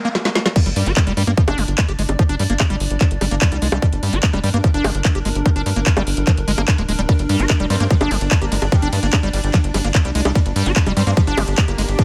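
A tight, up-front electronic kick drives this intense, hypnotic psychedelic trance excerpt at 147 BPM in G phrygian, landing at the drop at 0.6 seconds after a faint noise sweep and a drum fill from the layered drum and bass kit, whose woody snare, metallic hats, bongos, handclaps and cymbals sound re-recorded in a small room. Beneath it, a punchy sawtooth-and-square sequencer bass pushes relentlessly while a squelchy, resonant acid bass riff with chorus, 12-bit sampler grit, sidechain pumping and digital delay carries the hook. A detuned, granular swarming drone hovers in the background with its own reverb and pumping, and from 7.7 seconds a saturated, FM metallic wobble bass adds an aggressive second line, all in a dry, close mix.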